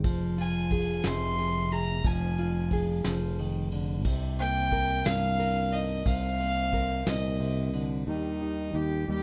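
Acoustic folk at 60 BPM in a straight 6/8, this hopeful, pastoral excerpt opens with fingerpicked classical nylon-string guitar and an up-front, amped fingered electric bass moving through Fm and Cm7 toward Eb. They play under a soft brush kit with dark cymbals, a fat snare and a punchy kick, which stops at 7.9 s, and a jingly, bright tambourine set back in the mix. A rich, earthy bowed fiddle enters at 0.4 s to carry the melody, all captured by close, detailed microphones with light reverb.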